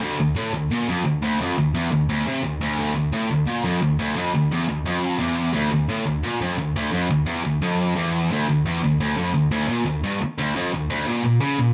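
A high-gain distorted guitar opens this metal excerpt by itself, picked and double-tracked, with a bright, distorted edge sitting up front in the mix. The music moves at 174 BPM in a straight 4/4, set in D harmonic minor with the tuning pitched to A4 = 445 Hz. The guitar stays low, ranging from D2 to C#3, and its relentless drive gives the passage an epic feel. Around 8.3 seconds the music shifts into a new section that carries through to the close at 11.7 seconds. A light reverb surrounds the sound, and the overall production leans dark and warm.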